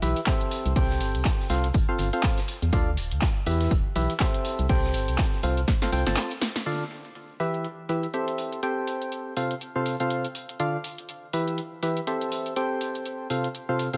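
A hollow, percussive organ stab sits up front for the full 14 seconds, its sine-and-triangle tone with a thin noise layer struck with a fast attack and quick decay, thickened by chorus, echoed by delay and pumping against the beat. This soulful, bittersweet piano house excerpt swings its 16ths gently over a cycle of Em, C6, F and Dm chords. Beneath it, a dark, organ-like FM bass pumps in step, while a tape-warm electronic kick thumps from 0.3 seconds until it drops out at 5.8 seconds, and the bass follows at 6.2 seconds. A punchy analog drum machine with handclaps, hi-hat and snare runs throughout, its hats and snare low-pass filtered and given a short room. Further back, a vintage acoustic kit of hi-hat, shaker and snare adds a warm, rolled-off, pumping room sound until a drum fill, a brief break and a band accent hand over to the second section at 6.7 seconds, all framed by light reverb and small room ambience.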